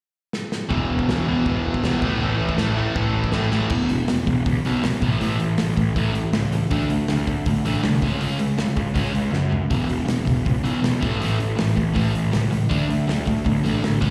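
A loose indie drum kit with dark cymbals kicks off with a fill at 0.3 seconds before a crunchy overdriven guitar with slapback echo, a bright distorted electric guitar that drops out at 3.7 seconds, and a growly fuzz bass crash into a rowdy, rebellious 160 BPM punk rock excerpt in E major, moving through E5, A5, D5 and C#5 power chords with another drum fill at 9.3 seconds, all heard as a live gig through the venue's PA in a recital hall.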